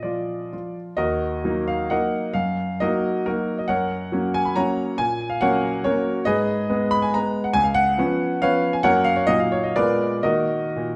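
A classical, romantic triple-time dance for solo piano, this short excerpt cut from a longer piece moves in 3/4 with dotted rhythms and a flexible rubato feel, its tempo drifting between 109 and 150 BPM. The mood is capricious and nostalgic, set in Eb minor. A concert grand piano carries everything from 0.0 to 11.0 seconds, spanning Db2 to Cb6, with a deep bass, an intimate, up-front presence and audible action noise that keeps the sound natural and close. The harmony opens on Bb, settles into Ebm at 1.0 seconds, and passes through Gb and Abm before a Db7 leads back toward Gb, with a Bb7b9 pulling the phrase home to Ebm at 10.2 seconds. A moderate recital hall reverb, with a decay of 1.3 seconds, gives the instrument a sense of space around its otherwise immediate tone.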